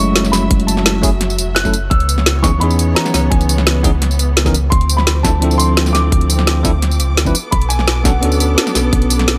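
Dreamy and rolling, this short liquid drum and bass excerpt moves through a minor-key progression of F#m7, C#m7, Dm7 and Bm7. A dark, mellow baby grand piano carries the high melody with an intimate, boxy tone, short sustain and audible action noise, colored by tape echo. Beneath it, a bell-like tine electric piano plays bright, clean accompaniment with its own tape echo, while a lush, distant string section holds bowed chords with vibrato and a sidechain pumping effect. A deep, full sub bass with an octave layer sits up front with a fast attack and sustained notes. The drum kit enters at 0.2 seconds with a woody snare, bright hi-hats and tambourine placed forward in the mix, and a tight electronic kick joins at 0.5 seconds. The overall sound is dry, with little reverb.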